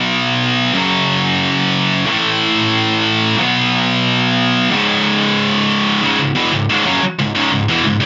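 A light reverb surrounds a close, up-front sound whose top end is trimmed, giving this short metal cut a dense, slightly dark edge. A single electric guitar carries the whole passage, scooped and high-gain with distortion, picked and double-tracked so it sounds thick and bright at once. The tempo is a fast 182 BPM in straight 4/4, in C# minor, and the mood is heavy and relentless. Through the first 6 seconds the guitar moves through power chords on B, F#, A, B and C#, staying in a low register. At 6.0 seconds the passage shifts to a new section built on a C# minor chord, which holds until the cut ends at 8.1 seconds.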